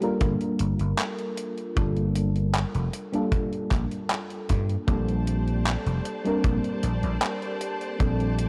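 A growly, punchy vintage slap bass sits up front in this melancholic, nostalgic vaporwave excerpt, beside a soft, round FM electric piano warbling through tremolo, analog chorus and delay, a tight, saturated kick drum, and a detuned 8-bit drum machine adding tape-warm handclaps and hi-hat. A bright, lush bowed string section with 12-bit sampler grit enters at 4.9 s as the harmony moves from Gm9 to Bbmaj13, and the dark, warm mix sits in a moderate, lush hall reverb.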